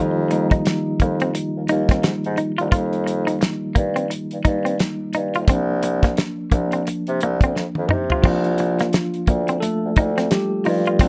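Dry and close, with little reverb, this short cut from a longer R&B and neo-soul piece has an introspective, soulful mood and a gently swung sixteenth-note feel. A clean tine electric piano, heard through its built-in speakers, carries a solo across the whole passage, moving from an F9sus4 chord to C9sus4 at 5.5 seconds. Beneath it, a warm bassoon plays the bass line in a classical style with light vibrato, sounding roomy and slightly distant. A bright, compressed semi-hollow electric guitar adds a fingered second line with a hollow-body tone. The damped 70s acoustic kit enters at 0.3 seconds, up front with a fat snare, a tight kick and dark cymbals, and plays a fill between 7.5 and 8.2 seconds.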